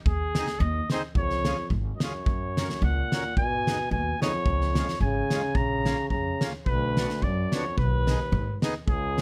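A bouncy 2/4 swing at 109 BPM with a touch of rubato drives this festive alpine dance-band excerpt, where a clear, vintage flugelhorn leads the melody over a woody pizzicato upright bass and a loose, up-front acoustic drum kit with a fat snare and punchy kick, a reedy, close-miked accordion fills in from 0.4 seconds, and a warm, softly attacked euphonium with light vibrato and slapback echo adds a second line from 1.2 seconds, with little reverb on the mix.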